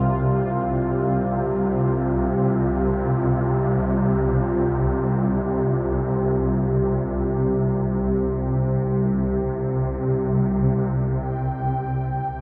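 A sweeping, resonant pad of detuned sawtooth and triangle tones with a sub octave opens this dark, unsettling ambient drone fragment, holding a C5 chord through a filter swell and chorus. Beneath it, from the very start, sits a swarming, granular drone of sine voices in unison, tense and evolving. At 11.2 seconds a bubbling texture enters high at G5, its sawtooth tone moving in random filter steps through chorus, and the whole production is dark and soaked in a huge wet reverb with an 8.4-second tail.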